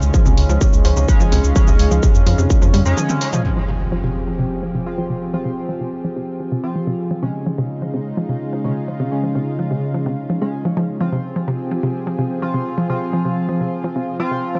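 A thick, warbling pad, edgy, nasal sync-sweep polysynth stabs with a cassette-tape tint, a round, deep analog bass and a low-passed techno kit of hats, shaker and toms open this melancholic, cinematic melodic techno excerpt. They are joined almost at once by a distorted kick up front and punchy, detuned pluck arpeggios, with the pad, polysynth, bass and pluck all pumping to the sidechain. A drum fill and brief break lead into an electronic impact at 3.4 seconds, after which the bass and drums have dropped away, leaving the pad, stabs and delayed arpeggios moving between Dbadd9 and Fm in a dark production with light reverb.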